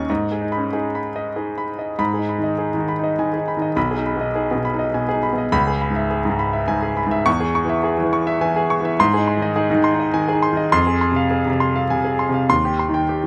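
Close, detailed and lightly reverberant, this short classical excerpt of a virtuoso piano study in G# minor features a clear, intimate grand piano, up front with audible action noise, playing solo from B1 to C#6 in an agitated, passionate 3/4 at 102 BPM with rubato, moving from G# minor through C# minor harmonies to Ab, Fm and Cm/Eb before cutting off at 13.3 seconds.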